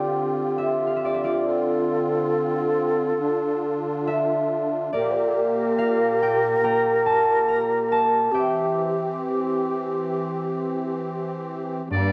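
A ringing, fingerpicked concert harp carries a solo through most of this haunting, longing Celtic slow air at a rubato 69 BPM in 4/4, tuned to A4 = 439 Hz and moving from Csus2 through Dm7 and Gm to C, while an airy, hollow wooden flute with vibrato sings a distant second line, a reedy musette accordion shimmers with dark sustained chords, and loud, piercing bagpipes break in on the melody at 11.9 seconds, captured in a dry, close 1970s-style studio sound with light reverb.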